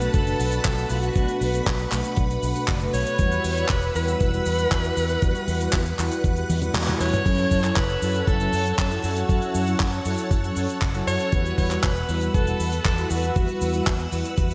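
A dreamy, reverb-soaked mix opens this bittersweet, melodramatic italo disco cut, taken from a longer piece and moving at 118 BPM in a straight 4/4 in E dorian. A bright alto saxophone carries the melody with pop-style vibrato and a diffuse ambient delay, floating over lush string machine chords thickened by ensemble chorus and a sub octave. Mellow synth brass stabs, round and detuned with a filter sweep, add a dusky layer through chorus, cassette tape coloring and delay. Underneath, a punchy fingered electric bass with an envelope filter sits beside a gritty, thumpy electronic kick that enters at 0.1 seconds, while a dry, damped 70s kit supplies hi-hat, cabasa, handclaps, toms and crash. The harmony moves from Bm7 through Emadd9 to F#m7, and at the halfway point a drum fill from 6.5 seconds, a brief kick dropout and a band accent at 6.8 seconds mark the return of the opening section.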